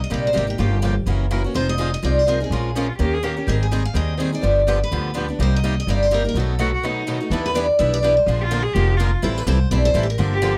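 Fiery, virtuosic acoustic string swing in C minor at a racing 250 BPM: a bright picked steel-string guitar carries the melody with audible finger squeak, two more picked guitars comp beneath it (one with a boxy swing-style voice), and a growly, woody pizzicato upright bass sits up front, while a rich bowed cello with vibrato and portamento adds an expressive second line briefly at 2.7 seconds and again from 6.6 seconds through a short break into a new section, recorded close and dry in this brief cut from a longer piece.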